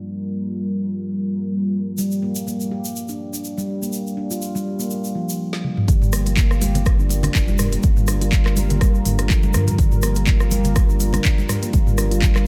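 Spiritual and hypnotic, this afro house passage at 123 BPM in G minor opens on a moody, detuned analog pad holding a Gm7 chord with chorus and sidechain pumping, joined at 2.0 seconds by ringing, meditative handpan arpeggios trailing delay and a grainy tube shaker. An afro-pop kit with woody snare, crisp hats, handclaps, rim clicks and toms enters with a drum fill at 5.5 seconds, leading into a drop at 5.9 seconds where a deep, up-front electronic kick, a round analog bass with a filter sweep and background congas join the kit to push the groove forward under light studio reverb.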